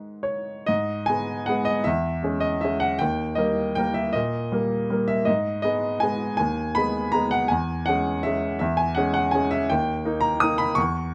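Close, detailed microphones and a light touch of reverb put a solo upright piano up front, its tone clear, woody and natural. This short classical fragment is a piano waltz in 3/4, played with a flexible rubato that lets the lilting triple pulse breathe and stretch. The mood is bittersweet yet elegant, moving through a minor-key progression that plays through once and then repeats within about eleven seconds. The piano covers a generous span from D#2 up to D#6, pairing deep bass notes with a clear upper register. Cut from a longer piece, it plays the opening of a first section from 0.7 seconds and ends at 11.1 seconds.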